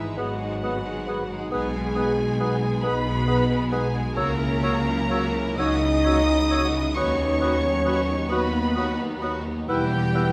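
A moderate recital-hall reverb gives this orchestral fragment a gentle, distant glow, cut from the middle of a longer slow romantic movement in a lilting 6/8 with a free, rubato feel. The mood is tender. A chamber violin section carries the smooth, vibrato-rich melody in the upper register, while a focused, lush second violin section adds a supporting line in the background. Violas and a mellow French horn section fill the middle with accompaniment and sustained chords, and a bright concert harp rings out arpeggios across its range. Cellos and soft-attacked double basses anchor the bass with expressive bowed tone. From 0.2 s an airy, hollow flute, an oboe with light vibrato and a dark, very quiet clarinet add soft second lines, while a roomy bassoon joins the accompaniment.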